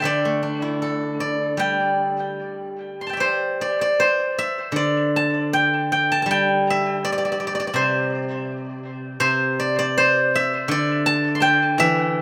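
Pastoral and elegant, this short passage of Chinese traditional music comes from a longer piece for solo plucked strings. A steel-string zither plays alone for the full 12.2 seconds, moving freely in rubato around a loose pulse of 75 to 83 BPM in 4/4, tuned slightly high to A4 = 441 Hz. Played with fingerpicks, the acoustic zither has a silvery, ringing tone with a warm body, spanning C3 to C6 and sitting up front in the mix with a touch of tape echo. A brief opening phrase gives way at 3.2 seconds to a longer second passage. The moderate studio reverb adds gentle space, while the rough home-demo mix lends the recording an intimate, unpolished character.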